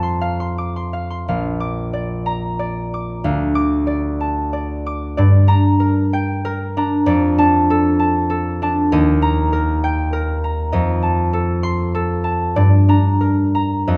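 A ringing, fingerpicked concert harp plays alone and up front in this serene, peaceful classical excerpt in Bb major, moving in a rubato 3/4 at 84-102 BPM across a range from Bb1 to D6 and drifting through Bb, Dm, Gm, Eb and F7 harmonies, all set in a moderate recital hall reverb with a dark production.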